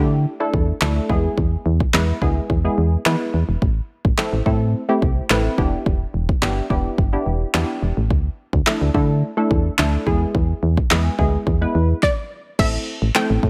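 Dance-pop at 107 BPM in a straight 4/4, this excerpt from a longer piece feels driving and bittersweet, tuned slightly low with A at 436 Hz. A solid FM bass sits up front from the start, punchy, round and dark with a fast attack, and its sidechain pumping gives the groove its breathing push. Alongside it, a crisp, full-bodied wavetable chord stab built from detuned unison voices with a filter pluck moves through Dsus2, E, Am and Em7. A layered deep house drum kit arrives at 0.5 seconds with a deep kick, a fat, tape-warm snare, handclaps and crash cymbal. At 12.0 seconds comes a stop, and a lush unison pluck melody enters in a high register, its sawtooth and sine layers with a noise edge shaped by a filter sweep, just before the chords land on Am at 12.6 seconds. Light reverb lends the mix a digital ambience.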